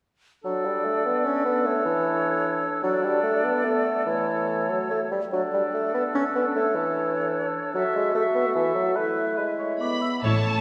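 This short, fast romantic movement for symphony orchestra opens at 0.4 seconds with woodwinds in D major and 3/4: an up-front, mellow bassoon carries the accompaniment while a pure, silvery flute with vibrato, a distant oboe with light vibrato and a roomy, soft-attacked clarinet each add a second line. The tempo sits around 137 to 154 BPM with a rubato feel, and the mood is lively and cheerful with a dramatic edge. The harmony moves through D5/F#, A, Bm7/A and A/E before settling on F#m7 and then E. At 9.8 seconds a lush, bowed violin section takes up the high melody with portamento and expressive vibrato, over tight, sustained French horn chords. From 10.2 seconds the rest of the strings join: a focused second violin line with a smooth top, smooth and even violas, very quiet cellos and background double basses on the bass. The whole ensemble is heard from further back in a reverberant concert hall.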